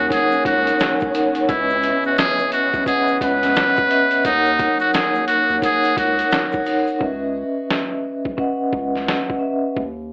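Heard through an AM-radio filter and a moderate studio reverb, this gritty, tough boom-bap hip-hop fragment moves at 87 BPM in 4/4 with a swung sixteenth-note feel in C# dorian. A muted trumpet carries the jazz-style melody up front, its buzzy, thin tone touched with light vibrato and a digital delay. A soft-mallet vibraphone rings out close and dry with a mellow tone, a medium motor vibrato and a cassette-tape colour, while a lush bowed string section holds sustained chords in the background. Underneath, a round analog bass gives a deep, nasal low end, and a compressed, pitched-down sampler-style kit thumps with a thumpy kick, medium-tuned snare and hi-hat, re-recorded in a large room, joined by a faint, grainy egg shaker. The harmony moves between D#m7 and C#m9. The trumpet drops out at 6.5 seconds, and from 7.0 seconds the strings and shaker fall away for a break carried by vibraphone, bass and drums.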